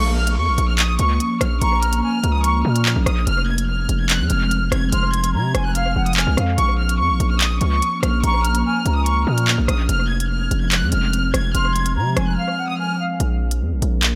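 An echo-heavy, lightly reverberant mix frames this ominous, dark half-time drill cut from a longer piece, where a heavy, distorted 808-style bass and crisp, tape-tinged electronic drums with hi-hat, handclaps and rim click sit up front, a lush bowed violin section carries the high melody with vibrato and analog delay until 13.0 seconds, a distant, tongued concert flute adds an expressive second line, and an ethereal, detuned pad with ensemble chorus holds sustained chords over a Bbm–Fm progression before a brief break at 12.4 seconds.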